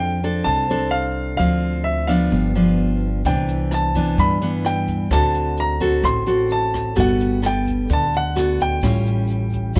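Bossa nova in D minor at 129 BPM, wistful and smooth, with a clear baby grand piano carrying the melody over an up-front, full-bodied nylon-string guitar, fingerpicked with audible finger squeak, and a woody pizzicato upright bass. At 3.2 seconds a grainy egg shaker slips in behind, joined at 3.3 seconds by a brushed jazz kit whose hi-hat, rim click and boomy kick sound natural and small-room. Under light reverb, the chords move from F6 through Dm7, G7 and Cmaj9 to D7, Gmaj9 and A7b13 in this short excerpt cut from a longer piece.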